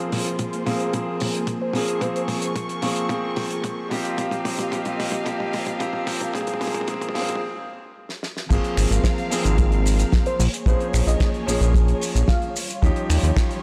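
A clear grand piano with analog delay and a lush, woody string section under sidechain pumping open this sunny, groovy nu-disco excerpt, joined almost at once by a damped 70s drum kit with a fat snare and dark cymbals and a tight, dry kick, while a thick, bold sawtooth unison lead with subtle chorus makes a brief early appearance and drum fills build toward a short break before a fat, detuned analog bass arrives at 8.5 s for the drop and the lead returns at 10.3 s, the whole captured with a gritty hardware character and light reverb.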